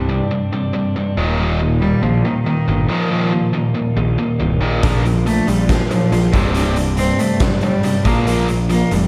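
A single bowed cello carries the melody in this brooding, dark alternative rock excerpt, its sul tasto tone nasal and pure, with a soft attack that seems to float close by. Beneath it, a tight distorted guitar plays an up-front riff through slapback echo. A compressed, twangy twelve-string electric guitar picks clean arpeggios further back, also touched with slapback. A fuzz-laden picked electric bass growls with overdrive and holds the low end. The section moves in a heavy half-time feel over Csus2, Eb and Bb chords. At 4.8 s a big acoustic rock kit arrives with a fat snare, punchy kick and hi-hat, set in a bright stone room, while a wet recital-hall reverb lends the mix its arena-sized scale.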